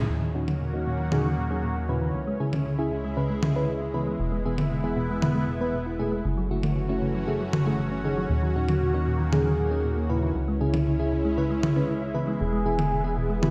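A lush, detuned unison pad, a round, tine-like synth pluck tucked in the background, a soft FM electric piano playing stabs and a glossy chorused synth bass open this nocturnal, moody synthwave excerpt together, with filter sweeps running through the pluck's arpeggios and the electric piano's stabs. Overdriven electronic toms drenched in gated reverb arrive at 0.5 seconds, and at 8.3 seconds a smooth, expressive synth lead with vibrato, chorus and digital delay takes up the melody. The bright 1980s-style digital production sits in a moderate plate reverb.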